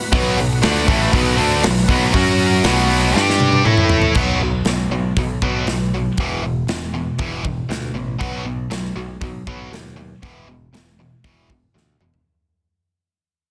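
A thick, lightly overdriven tonewheel organ holds sustained chords from the very start, very quiet beneath the band, its slow rotary speaker and chorus vibrato adding a gentle shimmer until it drops out at 4.2 seconds. This aggressive, driving hard rock excerpt in B minor moves at 119 BPM in a straight 4/4, with a bright, double-tracked overdriven guitar riff sitting up front and a sludgy distorted guitar playing a riff in the background for the opening bars. A growly, direct electric bass anchors the low end, while a big acoustic rock kit with a punchy kick, medium-tuned snare, toms, hi-hat and bright crash cymbals pushes hard from the front of the mix. The chords move from Bm through F#5, B5, G5 and A5 before a drum fill carries into a section that alternates B5 and E5, where the overdriven guitar, bass and drums continue as the passage fades out. The sound is dry and dense, with a heavily limited modern master, and another drum fill closes the passage near its end.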